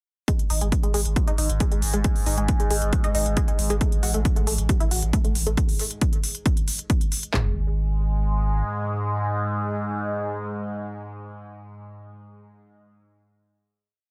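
An up-front, overdriven techno drum kit drives this intense, dark peak-time techno piece with a heavy four-on-the-floor kick, layered claps and floor tom from 0.3 seconds. Smooth closed and open electronic hi-hats, also overdriven, ride the programmed backbeat and pump against the kick. Beneath them, a thick, saturated sub bass built on a triangle wave sits behind a low-pass filter and fills the gaps between kicks with a low rumble. A tight sequenced synth repeats a 16-step pattern with a plucky filter, mixing sawtooth, pulse and wave-folded sine tones that are colored by chorus, phaser, tube saturation and tape echo. A resonant drone with slowly moving overtones fades in behind the groove, washed in chorus, phaser and its own reverb. After the groove ends at 7.3 seconds, it carries the final note until 10.9 seconds, and its long release trails on until 11.7 seconds. The whole piece sits in a digital ambience with a dense, heavily limited modern master.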